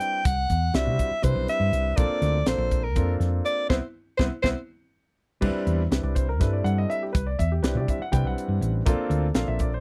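A dry, close 1970s-style studio sound frames this bright, funky electric jazz fusion excerpt in 7/8 at 244 BPM, counted in eighths, moving between Cmaj9 and Bbmaj9 harmonies. A mellow soprano saxophone with light vibrato, scooped notes and a slapback echo carries the melody until 4.5 seconds. Beneath it play an intimate concert grand piano with audible action noise, a crisp drum kit with dark cymbals and a high-tuned snare, and a round, punchy hollow-body fingered bass that enters at 0.3 seconds. A band accent runs from 3.7 seconds, topped by drum and piano fills that lead into a new section at 5.4 seconds, where the rhythm section carries on alone.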